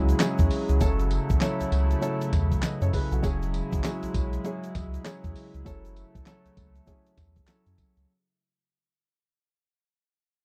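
A gritty, thumpy sampler-style drum kit with handclaps, tambourine and a medium-tuned snare sits up front in this bouncy, punchy new jack swing groove at 99 BPM in F# minor, swung on the 16ths and cut from a longer piece that fades out across its 8.1 seconds. A round, deep analog bass with a filter sweep anchors the low end, while a natural baby grand piano accompanies and a shimmering, retro chorused pulse-width pad sustains chords moving between E69 and F#m7. A grainy tube shaker sits in the background of a dry, close 1970s-style studio sound.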